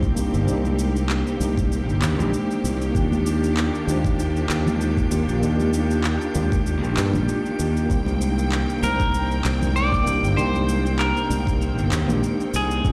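Sunset chillout with a wistful, easygoing swing, this excerpt rests on a mellow tine electric piano with delay and a distant, lush bowed string section, over a growly, up-front fingered bass, a knocking tape-warm electronic kick, and electronic shaker and handclaps. Very quiet congas play from 0.6 to 12.2 seconds, while a glassy texture with drifting overtones and chorus hovers in the background. At 8.8 seconds a twangy, picked clean electric guitar enters with the melody through tape echo, all heard as if played on a big sound system in a bare room with large studio reverb.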